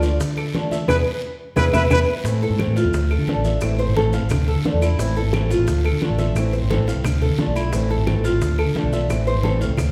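A dark, round, foam-muted electric bass sits up front in this sultry, nostalgic Cuban son and guajira cut in A minor at 175 BPM, underpinning a bright, metallic tres playing arpeggios with its doubled strings and a boxy, woody fingerpicked old acoustic guitar. A breathy, whispered trumpet with light vibrato and scooped notes holds a B4 from 0.9 to 2.0 seconds over a band accent and a drum fill, as the harmony moves from Dm to E before settling into an alternating Am and Dm pattern. Low-tuned congas, tight high-tuned bongos, a close, dry, raspy guiro, grainy maracas and claves from 0.4 seconds fill out the percussion, while the recording as a whole is heard from further back in a large, wet studio reverb.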